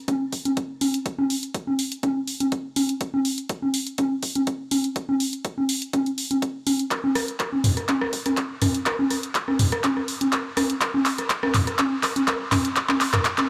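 A punchy analog drum machine sits up front with congas, rim clicks and toms pumping against the sidechain in a small room, alongside an overdriven deep house kit of handclaps and pumping hi-hats and a layered electronic kick with a high-pass filter, as this bittersweet, expansive 123 BPM house excerpt builds throughout and breaks into a drum fill from 6.9 seconds under light reverb.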